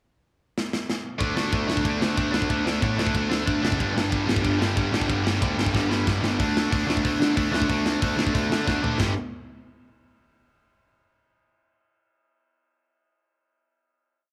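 Upbeat, energetic punk rock in a straight 4/4, opening with a drum fill on a tight metal kit with bright cymbals and a medium-tuned snare, up front in a big-room sound. At 1.2 seconds a double-tracked, overdriven electric guitar drives eighth-note power chords between D5 and G5, joined by a growly, fuzz-soaked picked bass pushing eighth notes underneath, while the drums keep a two-step groove with fills leading into the outro at 6.4 seconds. The dry mix closes on a final G5 chord at 9.0 seconds.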